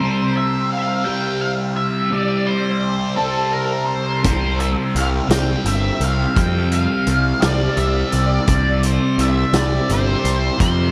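In a slow, straight six-eight pulse, this hazy, trippy psychedelic rock excerpt opens with a bright, double-tracked fuzz guitar riff swirling through a phaser, while a dark octave-fuzz lead guitar sings the melody through wah, distortion and a diffuse ambient delay. At 4.2 seconds a round, overdriven fuzz bass and a gritty vintage drum kit join in, the kit's punchy kick, snare and hi-hat carrying a rolled-off top. The whole dreamy mix is soaked in a cathedral-like reverb that lends it a floating, cavernous haze.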